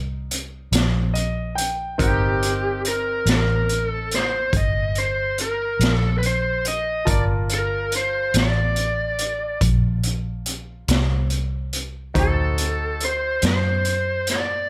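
A clear, smooth concert grand piano and a dark, round, foam-muted electric bass open this brooding, soulful slow blues in G minor at 47 BPM in 12/8, with a raw garage drum kit of gritty, punchy kick, hi-hat and medium-tuned snare joining at 0.3 seconds and the piano playing a fill from 0.7 seconds. At 2.0 seconds an overdriven lead guitar through a small cranked amp takes the melody with a picked, lo-fi tone, sitting up front over chords moving from Cm7 to Gm7 and then D7b9. The dry sound of this excerpt, cut from a longer piece, keeps the saturated drums, amped bass and guitar immediate, with the piano lower in the mix.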